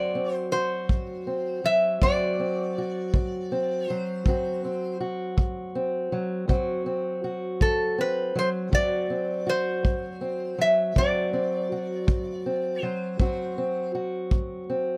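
A slow, straight 12/8 pulse at 54 beats per minute carries this soulful, laid-back acoustic country blues, cut from a longer piece and sitting on a D7 chord in D mixolydian, tuned slightly low to A4 = 438 Hz. A metal-body resonator slide guitar, played with fingerpicks, sings the melody up front in a bright, metallic, nasal voice with plate reverb until 13.9 seconds. Beneath it, a dark, boxy parlour steel-string guitar is fingerpicked with audible finger squeak, while a tight, natural kick played with brushes enters at 0.9 seconds, all in a light studio-room reverb.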